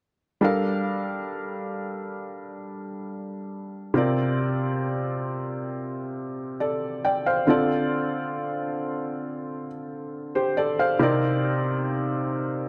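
A straight, unhurried 4/4 pulse sets a slow, sensual R&B mood in this brief excerpt, cut from a longer piece. A felt-muted upright piano is the only part, entering at 0.4 seconds and playing accompaniment until 12.7 seconds across a range from C3 to G5. Its tone is soft and mellow, with the thin felt giving each note a hushed, intimate quality, and it sits up front in the mix. The harmony moves through Gm9, C9sus4, Dm7 and Cm9, lending the passage a moody color. Light reverb and a small room ambience wrap the piano in a close, private space.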